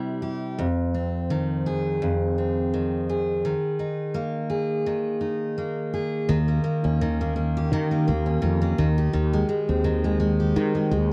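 Tender and wistful, this pop excerpt opens with a full-bodied, picked steel-string acoustic guitar up front, its jumbo body and audible finger squeak carrying the accompaniment through chords like Fm7 and Ebsus4 with a gentle sixteenth-note swing. At 6.3 seconds a growly, punchy fretless electric bass enters, sitting direct and close as the harmony moves to Eb7 and then Abmaj7 over Eb. Light reverb and a dark production give the short passage a soft, intimate glow before it is cut off at 11.1 seconds.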